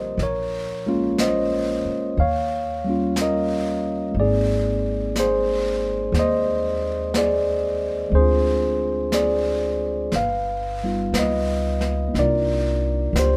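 A clean, up-front tine electric piano carries this tender, late-night jazz ballad excerpt, laying down a swung 4/4 progression that moves from Bbm9 and Eb9 to a settled Ab before turning through Dm7b5 and Gaug7 to close on Cm11. Beneath it, a woody, thumpy upright bass played pizzicato holds the low end, while a brushed drum kit enters at 0.2 seconds with brushed snare and hi-hat. The trio sounds like a band playing live together in one studio room, wrapped in a moderate reverb.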